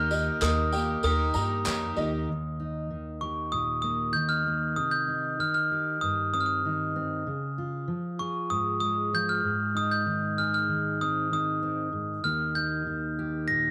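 A bell-like glockenspiel melody, struck with brass mallets, rings up front over a brief anthemic indie folk opening of mellow grand piano, shimmering octave-doubled twelve-string guitar, woody upright piano arpeggios, growly pizzicato upright bass, distant jingly tambourine and crisp group handclaps, all of which fall away by 2.3 s, when a full-bodied fingerpicked steel-string guitar carries the accompaniment beneath the glockenspiel through 13.7 s, the whole warm excerpt glowing with spring reverb in a small room.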